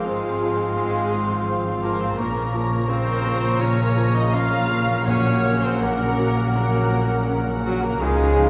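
Heard from further back on a reverberant scoring stage, this short cut from a longing, sorrowful film cue drifts at 83 BPM in a rubato 4/4, moving through Fm/Ab, Bbmadd9 and Gb/Bb. Veiled con sordino violins carry the melody and a second line, woven with a hollow, pure flute, a mellow cor anglais and a very quiet, dark clarinet. Beneath them sit background violas and distant chamber cellos, lush double basses, an intimate felt-muted upright piano with audible action noise, sustained French horn chords, ringing harp arpeggios, and a very quiet timpani Bb2 from 5.1 to 6.1 seconds.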